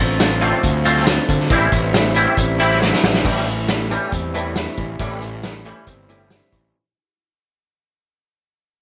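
Indie rock in a moody, cool vein, this short cut from a longer piece pairs a slightly broken-up, lo-fi guitar riff through a small old amp with a clean, twangy fingered guitar carrying ensemble chorus and slapback echo, over a fuzzy, overdriven fingered bass and a loose, roomy acoustic drum kit with dark cymbals, punchy kick and tambourine, moving from Dm7 to Am7 before a drum fill at 2.8 seconds leads into a fade-out from 3.2 seconds, all within a light small-room ambience.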